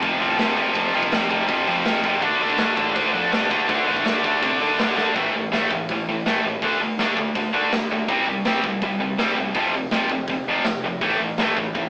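Angry and urgent, this punk rock fragment charges along at 164 BPM in A minor, with a tight, bright, double-tracked distorted guitar riff up front, a growling overdriven picked electric bass in the background, and a raw garage drum kit of punchy kick, medium-tuned snare and hi-hat sounding gritty and saturated in a pumping stone room, the whole captured as a rough rehearsal-room recording with an AM radio tone, and a drum fill at 5.0 seconds leads into a new section at 5.2 seconds.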